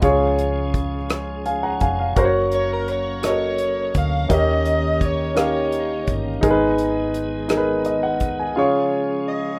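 A clear, up-front concert grand piano anchors this uplifting slow gospel excerpt in 6/8. Its intimate sound catches audible action noise and deep bass, and it plays an early fill over chords moving from C# through F#, D#7 and G#m. A raspy, gritty soprano saxophone enters at 2.5 seconds, distant and roomy with vibrato, joined until 6.1 seconds by an overdriven slide guitar in the background, while a piping tonewheel organ with key click and fast rotary speaker holds sustained chords; beneath them, a dark, round hollow-body electric bass and a tight-kicked acoustic country kit of hi-hat, kick and rim click give a jubilant lift to this rough home demo with light reverb.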